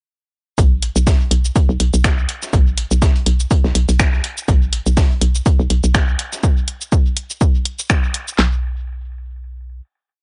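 A four-on-the-floor kick from a punchy analog drum machine drives this short, complete minimal techno piece, with claps and a snare and a lightly swung sixteenth-note feel. A second drum machine part adds closed hi-hats, finger snaps and cabasa, run through an analog delay. Up front, a hollow, knocking FM bass rolls through a bouncy staccato groove with a fast attack and mellow decay, thickened by tube saturation and sidechain pumping. Deeper in the background, a gritty, overdriven sampler-style soul kit loops an edited breakbeat of hi-hat, medium-tuned snare and tambourine, sounding compressed and re-recorded in a small room, and it drops out at 6.4 seconds. The mood is sparse and hypnotic, with a dry, echo-heavy mix and a dark top end, and after the drum machines fall away around 8.4 seconds the bass holds a final note alone until 9.8 seconds.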